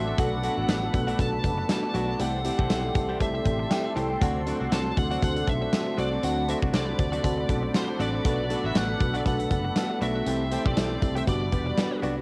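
A dark, overdriven lead guitar carries the melody from the opening moment of this glossy, nostalgic 1980s-style pop excerpt, over a glassy, bell-like FM electric piano, a smooth sawtooth pad, a compressed clean guitar riff tucked into the background, very quiet, fat synth brass stabs and a growly fretless bass. At 0.2 seconds a big, punchy rock drum kit enters up front with hi-hat, kick, snare and tambourine in a lightly swung groove, and a mellow, inharmonic synth chime rings briefly between 3.7 and 4.6 seconds. The chords move through Bm7, C6, D7 and Gmaj7, framed by light reverb and the character of a home cassette recording.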